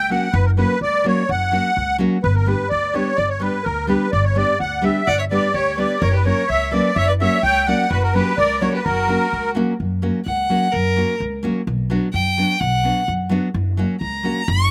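A straight 2/4 pulse at 127 BPM drives this fiery, virtuosic Balkan wedding-band excerpt in F# phrygian dominant, cut from a longer piece and recorded outdoors with little reverb, where a woody, thumpy pizzicato upright bass and a fingerpicked nylon-string guitar with slapback echo support a reedy, shimmering musette accordion melody that carries the tune until 9.5 seconds, while a clear, smoothly bowed violin with vibrato and slapback echo enters at 5.1 seconds as a second line and then takes a solo from 9.8 seconds over chords moving from F# through G and Bm back to F#.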